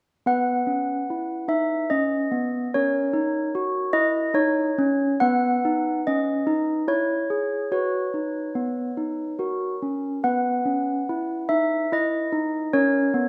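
A moderate scoring-stage reverb surrounds this short classical piece, giving the handbells a roomy halo while they stay up front. It is a serene, festive tune in three-time, cut from a longer work, with the handbells playing solo from 0.3 seconds to the close at 13.3 seconds. Their tone is clear and ringing, softened by gentle clappers into a mellow, bell-like glow across a span from B3 to F#5. The harmony opens on B and moves through A#dim/C#, C#m/E and a suspended F#sus4 that settles onto F#, then returns to B at 10.2 seconds. The fragment breaks off on an unresolved, rootless G#sus4, as if the music carries on beyond it.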